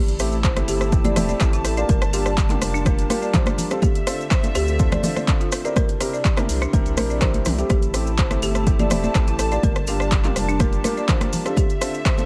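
A punchy, overdriven electronic kick sits up front in this hypnotic, driving afro house excerpt, joined by a deep house kit of handclaps, hi-hat, rim click and toms that is also pushed into overdrive, with bright, hard-hand congas and grainy maracas tucked in the background. A round, deep analog bass with tube saturation, woody hard-mallet marimba arpeggios and soft felt-muted upright piano stabs, the latter two echoed by delay, all pump under sidechain alongside dark, sul tasto studio strings holding sustained chords. The harmony cycles through Am7, Gm7, Dm7 and C7 in a studio ambience.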